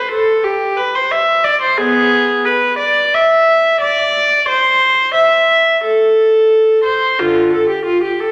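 A lone bowed viola with a reedy, gut-string period tone and a smooth top sits up front in this introspective, flowing 8.3-second fragment of a baroque-style suite movement in 4/4, played with rubato and carried by the lingering reverb of a recital hall.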